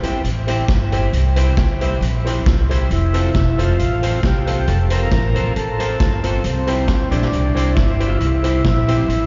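A woody, pizzicato upright bass on steel strings sits up front and carries this cheerful, upbeat ska excerpt at 136 BPM in F major, with a light swing on the eighth notes. A vintage drum kit with a tight kick, medium-tuned snare and hi-hat sounds mid-forward and rolled-off on top. Twangy, picked electric guitar at the edge of break-up is coated in lush chorus and dub echo, while a worn, slightly detuned upright piano adds stabs through dub and slapback echo. At 2.9 seconds a smooth, clean tonewheel organ takes the melody through a slow rotary speaker with audible key click and its own dub echo, as the harmony moves from C to F and back to C at 6.4 seconds. The whole thing sounds like a live gig heard through the venue's PA, with recital hall reverb and a dull, capped high end that gives it a hazy, vintage glow.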